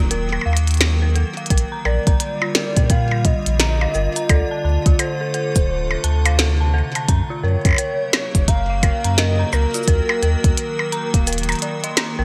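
IDM at 86 BPM with a swung 16th-note feel, intricate and glitchy, cut from a longer piece and set in a bright 1980s-style digital production with light reverb. An icy, crystalline glass pad holds sustained chords with chorus and 12-bit sampler grit, and an eerie, inharmonic FM bell plays arpeggios through digital delay. A round sine sub bass with tube saturation sits up front beneath a tape-tinged glitch kit of tiny snare, clicky hats, shaker and percussion blips in gated reverb, while a soft electronic kick enters at 1.5 seconds and a warbling, nostalgic lead with vibrato and portamento carries the melody from 1.9 seconds over chords moving from Ebm through Bb6, Dm7 and Gb.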